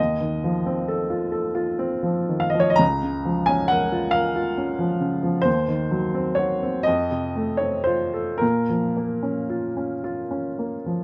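A baby grand piano, open and up front, sounds alone from the start in this short cut from a romantic nocturne in Bb minor, unfolding at a slow, rubato 12/8 with a yearning, mournful mood. Its warm tone spans from low Db2 up to Bb5, caught by close, detailed microphones in a nearly dry room. The harmony moves from F7 over Eb through darker chords before settling on Bb minor at 8.4 seconds.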